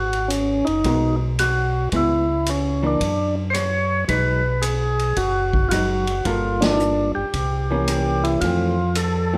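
Soul jazz organ trio with a bluesy, late-night swing in 4/4, cut from a longer piece: a percussive tonewheel organ carries the melody with key click and a slow rotary speaker, while a mellow, round second organ voice handles the bass, both sitting up front. A dark, compressed hollow-body electric guitar joins at 0.9 seconds with picked accompaniment, and a distant, roomy drum kit with a boomy kick and rolled-off top swings on hi-hat, ride, snare and rim click. The band hits an accent at 6.5 seconds as the harmony slips from G#m9 and C#m7 through Gm9 and C7b9 to Fmaj7, all in a moderate large studio reverb.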